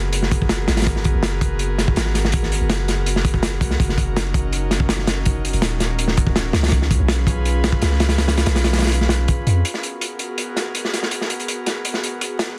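Raw and frenetic, this drum and bass and jungle excerpt at 164 BPM in G# dorian pairs a crunchy, gritty breakbeat kit of hi-hat, tight kick and snare, high-pass filtered and placed up front, with a deep, mellow 808-style sine bass that drops out at 9.6 seconds, while an airy, breathy, chorused pad holds sustained chords from G#m9 through F#6 and C#7 back to G#m9 beneath light small-room reverb, vinyl crackle and a dense, heavily limited master.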